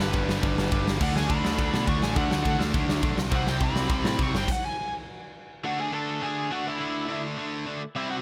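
Upbeat and rebellious, this dry, straight-ahead punk rock fragment opens with a warm, distorted bluesy lead guitar soloing over a cranked, up-front stack guitar riff, two bright background rhythm guitars, a growling overdriven bass and a punchy big rock kit with crash and ride cymbals, before everything but the lead and stack guitars drops out by 4.5 seconds for a stop, after which those two carry on until 8.2 seconds.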